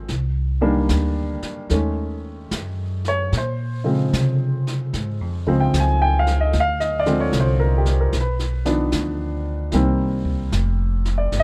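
A jazz ballad at 75 BPM in 4/4 with a gentle swing on the eighths, this short excerpt cut from a longer piece feels intimate and romantic. A baby grand piano sits up front as accompaniment, its tone warm and natural, ranging from Db3 to Ab5. An upright bass, plucked on gut strings, gives a woody, dark, thumpy low end that is also close and present. A brush drum kit enters at 0.1 s and sits well behind the others, its brushed snare, hi-hat and boomy kick sounding distant and roomy, as if in a small room. The harmony moves through Cm7, Ebm7b5, Bbm9, Dm7b5 and Bdim before returning to Cm7, and the overall sound stays dry with little reverb.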